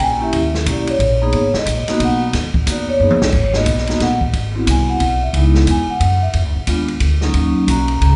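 Up-front soft-mallet vibraphone, mellow and ringing with a slow motor vibrato and a vintage, band-limited tone, provides accompaniment in this moody, smoky small-group jazz waltz in G# minor at 180 BPM in 3/4 with a swung eighth-note feel. A thumpy, woody pizzicato upright bass on gut strings and an open acoustic drum kit with dark cymbals, a medium-tuned snare and a boomy kick support harmony rich in flat-nine and altered dominant chords, with a drum fill at 3.0 s leading into the second phrase. The group sits in moderate hall-like reverb, and the passage is cut from a longer piece.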